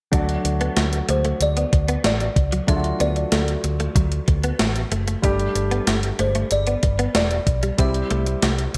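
1980s-style pop at 94 BPM in D mixolydian, uplifting and romantic, built on an overdriven, gated digital drum machine with a thumpy kick and a gated-reverb snare sitting up front beside a dark, round, foam-muted fingered bass. A warm, intimate grand piano with audible action noise supplies accompaniment while a clean, compressed, direct-recorded electric guitar picks a riff through ensemble chorus and digital delay, and the harmony moves from D to Gsus2 at 5.2 seconds and C at 7.8 seconds. At 1.1 seconds a woody, boxy kalimba with short thumbnail plucks carries the melody through digital delay, all framed by bright digital production and a moderate plate reverb.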